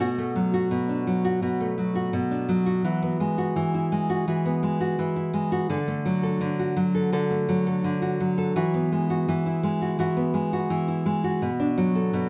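In a straight, unhurried four-beat pulse, a lone nylon-string guitar carries this delicate, wistful folktronica fragment from a longer piece, fingerpicked in a classical manner and placed up front with an acoustic warmth. The chords move from Bm7 to Eadd9, D and back to Eadd9 before settling on Bm7 at 11.4 seconds, all heard within a short, wet studio ambience.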